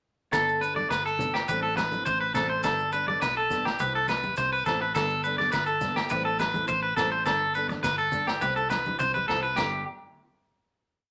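A warm, roomy studio sound carries this short, joyful highlife guitar band piece, where a bright, twangy electric guitar at the edge of break-up picks an up-front arpeggio ostinato over fingerpicked flamenco guitar strumming in upper chord shapes, a round, foam-muted fingered electric bass playing a dotted figure, a gritty vintage drum kit with dark cymbals, ringing agogo bells, grainy maracas and soft-handed congas entering at 0.8 seconds, all cycling through Gadd9, Am7 and C before settling on a final Gadd9 chord at 9.6 seconds.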